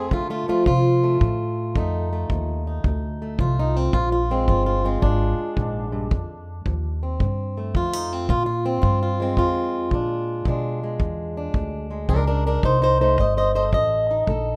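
A fingerpicked, plugged-in acoustic guitar carries the melody from the very start, boxy and up front with audible finger squeak, while a woody pizzicato upright bass plays beneath it in this swaggering, laid-back excerpt of acoustic country blues with a lilting swing feel. A dark, tight kick drum played with brushes slips in at 0.1 seconds, smooth and rolled-off on top, as the harmony moves between F7 and Bb7 before a Bdim7 turns back home. The rough home-demo mix sits in a small room, giving the whole take an intimate, warm, unpolished character.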